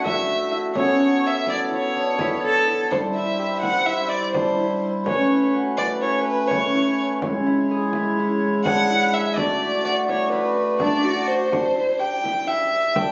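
A bright, ringing harp, a warm, intimate violin melody, and reedy, breathing harmonium chords that last until 11.5 seconds open this hopeful, shimmering contemporary chamber excerpt in 9/8 at 251 BPM in eighths. They are joined by a soft-handed, dry frame drum and brief, focused cello lines at 2.2 and 10.8 seconds, all heard through a recital-hall reverb and a muffled, compressed phone recording cut from a longer piece.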